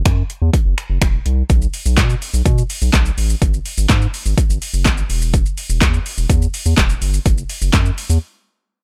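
A round, nasal analog bass with sidechain pumping opens this summery, carefree dance-pop excerpt at 125 BPM, joined almost at once by an up-front, overdriven deep house kit of deep kick, punchy snare, metallic hats, finger snaps, handclaps and shaker, all kept dry and close until both parts drop out for a brief break at 8.2 seconds.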